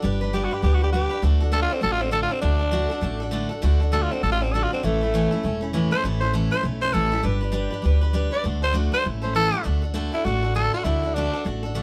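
Rollicking and upbeat, this short rockabilly excerpt in D major swings along at 200 BPM, with a growling, raspy tenor saxophone carrying the melody up front from 0.3 seconds over a bright, full-bodied picked steel-string acoustic guitar and a woody, thumpy pizzicato upright bass with gut strings, all captured as a band playing live in one room with light reverb.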